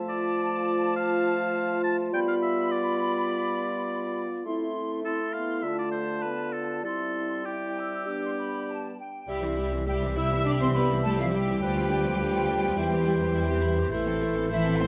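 Spirited and graceful, this quick classical-period movement for symphony orchestra moves at 103 BPM in 4/4 with a rubato feel, set in C major. It opens with woodwinds and horns: a pure, crisp-edged flute section, a clear oboe and a warm clarinet in the background weave second lines, while a distant, roomy bassoon and a tight, mellow French horn section supply accompaniment and sustained chords. At 9.3 seconds the strings arrive, with lush violins on a second line, very quiet violas, and an up-front double bass section with a soft attack anchoring the bass. A focused, vibrato-rich violin melody enters at 9.9 seconds, joined by cellos sitting in the background. The harmony passes through chords such as G7, Am, Dm and C, and a moderate concert hall reverb gives the ensemble a natural sense of space in this passage cut from a longer piece.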